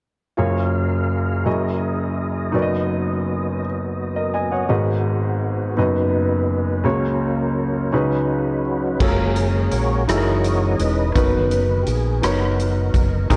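Slow gospel in a swaying 6/8, soulful and jubilant, where a clear, intimate grand piano with audible action noise accompanies from the start while a lightly overdriven tonewheel organ with key click, chorus vibrato and a slowly turning rotary speaker holds sustained chords. The organ takes a solo at 9.0 seconds as a round, punchy fingered electric bass and a swinging big-band drum kit with dark cymbals and a boomy kick join in, all colored by a small room's light reverb and the warbling pitch drift of worn cassette tape.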